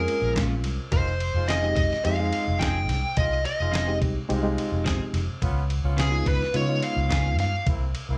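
A straight-eighth soul blues groove in 4/4 is carried by a muffled, pitched-down sampler-style drum kit with a thumpy kick and a round, foam-muted fingered electric bass up front, setting a smoky, brooding mood in this short passage cut from a longer piece. Over chords moving from Bbm7 to Fm7, then Db7 and C7, a smooth overdriven lead guitar carries the melody with slapback echo and plate reverb, while a reedy electric piano with fast tremolo accompanies and a clean, compressed electric guitar with analog chorus adds stabs. A tight, close-miked horn section holds clear sustained chords with vibrato, and the mix sits in a light studio reverb.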